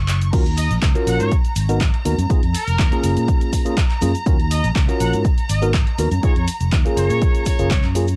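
Lush bowed strings and a growly, up-front fingered electric bass open this groovy, sensual filtered disco house excerpt, joined at 0.1 s by an overdriven analog drum machine fill of crash, handclaps, hi-hat and shaker, then at 0.3 s by a punchy tape-warm kick, faint maracas and a clean tine electric piano with phaser and 12-bit sampler grit moving through Ebm9, Abm7, Fm7b5 and Gbmaj9, while a bright, tight trumpet section with analog delay carries the melody from 0.6 s, the strings, bass, keys, trumpets and drum-machine hits all pumping to the sidechain in a dry, cassette-recorded mix.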